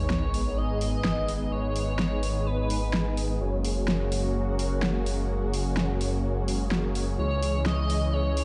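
A dark, full production set in a moderate hall reverb opens this anthemic, powerful slice of festival progressive house at 127 BPM in G# minor, moving from G#m through F#add9 to C#m. An overdriven big-room drum kit with a huge snare and hi-hat sits up front beside a thick, chorused detuned saw bass, while huge, bright supersaw chords play a filtered, delayed riff over a lush pad treated with chorus and phaser. A very quiet sub drop marks the impact at the start, and an airy, dreamy lead with vibrato and delay carries the melody until 3.2 seconds, then returns at 7.2 seconds.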